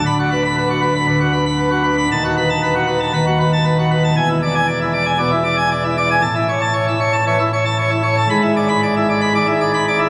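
A pipe organ in full plenum voicing carries this brilliant, jubilant classical toccata alone, its mixtures and baroque chiff sitting up front across a range from D1 to B5. At 116 BPM in straight 4/4, the harmony moves from Bm/D through B7/D# and E7 to A and then E7/G#, tuned to A4 = 442 Hz. The organ rings in a cathedral reverb with a 5.4-second decay, heard on a phone in the room with compression, in a ten-second passage cut from a longer piece.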